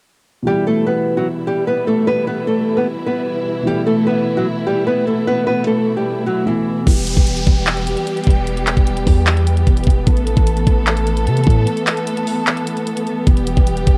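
Trap hip hop in E minor at 150 BPM with a half-time feel, menacing and brooding: a fingerpicked, up-front nylon-string guitar carries the melody over boxy, dark piano and lush, woody bowed strings with vibrato, all with a cassette-tape tint, until at 6.9 seconds the piano and guitar give way to a knocking trap kit with bright hi-hats and handclaps, a deep, sine-like 808 bass, and an electronic downlifter, with a break at 11.7 seconds before the chords return from Asus2 to Em.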